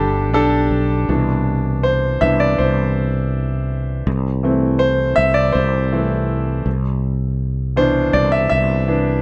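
A straight 4/4 pulse at 81 BPM carries this tender, heartfelt pop ballad in C major, where a clear, vintage-toned concert grand piano with deep lows sits up front beside a growly, amped fretless electric bass, the piano stepping into a solo at 1.1 s as the harmony moves from Gsus2 to Cmaj7, Am/C and back to Cmaj7, all inside a light small-room reverb.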